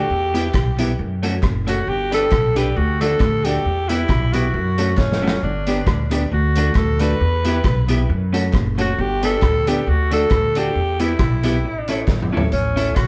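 This ska recording sounds like a band playing live together in one room, with a moderate studio reverb and a vintage drum kit that pumps with the small room, its punchy kick and medium-tuned snare sitting up front under a rolled-off top. The mood is energetic and mischievous at 135 BPM in 4/4, with a light swing on the eighth notes and a chord cycle of Em, F#m, G and D that turns to A near the close. Out front, a raspy, gritty tenor saxophone carries the melody with light vibrato and a forceful, punchy delivery, its smooth top trailed by dub echo. A woody, growly upright bass is plucked up front, while an electric guitar at the edge of break-up adds compressed, picked accompaniment from 0.3 seconds. A worn, slightly detuned upright piano sits in the background with long-sustained stabs, and a very quiet, crisp group handclap joins at 0.5 seconds. The drums mark the phrases with fills at 5.0 and 12.1 seconds in this short cut from a longer piece.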